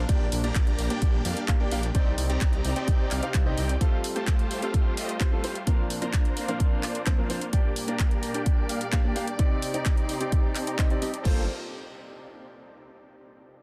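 Dark, nasal chamber strings and a thick, menacing detuned saw bass open this emotional, powerful festival progressive house excerpt, with the bass dropping out at 3.8 seconds and returning at 11.3 seconds as the harmony settles on Gm11. A deep-toned concert grand piano with dub echo joins huge, bright supersaw chords moving through a filter sweep, and sidechain pumping runs through the strings, bass, piano and supersaws. A punchy, up-front electronic kick anchors an overdriven big-room kit of crashes, handclaps and hi-hat, all in a dense, heavily limited modern master with digital ambience.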